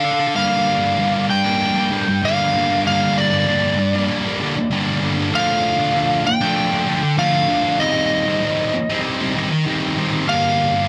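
A thick, double-tracked fuzz guitar and an overdriven slide guitar sound together from the very start of this melancholic, cinematic rock passage, cut from a longer piece in G minor. The fuzz guitar sits up front with a bright, distorted, picked riff that spans from G2 to A4, anchoring the straight 4/4 groove at 97 BPM. Above it, the slide guitar carries the melody in a high, narrow range from D5 to G5, its warm, fingered slide tone trailed by an analog delay. The harmony moves from Gm7 to Dm at 5.3 seconds, then to Cm over Eb before returning to Gm7 near the close. A moderate large-studio reverb with a digital ambience surrounds both guitars, lending the brooding piece a spacious, filmic weight through to 10.9 seconds.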